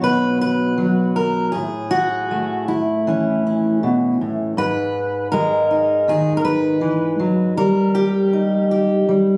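The rhythm is loose and rubato, drifting around 80 BPM in 4/4 so the pulse breathes rather than ticks. This short folk excerpt, just over nine seconds long, features a single fingerpicked steel-string acoustic guitar playing solo from start to finish, ranging from G#2 up to B4. The jumbo-bodied guitar sounds full and up front, with the ring of fresh strings giving it a nostalgic, warm glow. The harmony moves from B to A, then to G#madd9 at 4.6 seconds, and settles on D#/G at 7.6 seconds. A light reverb and a phone recording in the room place it in an intimate space, and the tuning sits slightly below standard pitch, at A4 = 437 Hz.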